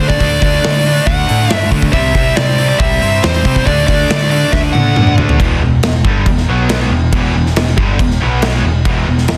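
A dark, smooth overdriven lead guitar opens this heavy, aggressive hard rock excerpt in E minor, its picked melody sitting up front with a tape echo trailing behind it until it drops out at 5.1 seconds. Beneath it, three picked rhythm guitars hold the riff from the start in the background: a bright, tight distorted one, a crunchy overdriven one and a raw, double-tracked garage-toned one. A round, hollow-body picked bass with an amped, shadowy tone anchors the low end, while an acoustic rock drum kit enters at 0.1 seconds with a punchy kick, medium-tuned snare, toms, hi-hat and bright crash cymbals, placed prominently in a studio room. At a straight 139 BPM in 4/4, the opening section moves through D and C before a drum fill from 4.5 to 5.4 seconds launches a second section that churns between E minor and B power chords. The sound is dry, dense and heavily limited, with a loud modern master.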